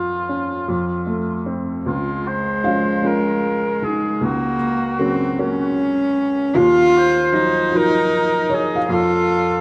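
This reflective, heartbroken acoustic folk-pop ballad in 6/8 opens with a mellow cor anglais singing the melody in a classical manner, with light vibrato and a distant, roomy tone that still sits up front. Beneath it, a clear, woody upright piano plays an open accompaniment. At 1.9 seconds a single bowed cello enters with a second line, its gut-string voice rich and reedy in a period style, also carrying light vibrato. From 2.6 seconds a second upright piano adds soft, intimate arpeggios from the background; it is felt-muted and dark, with a short sustain, audible action noise and a slapback echo. The harmony moves through Db, Gb over Db and Ebmadd9 before coming to rest on F, all wrapped in a lush hall reverb within a rough home-demo mix cut from a longer piece.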